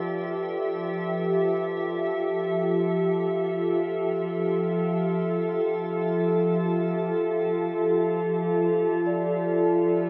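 Ambient and luminous, this serene fragment of a longer piece rests on a glassy, ethereal FM pad holding slow-blooming sustained chords around Fmaj7, bright and up front with ensemble chorus, while a mellow, ringing vibraphone played with soft mallets and a medium motor vibrato drifts through delayed arpeggios in the background, all bathed in a huge, wet reverb with a softened top end.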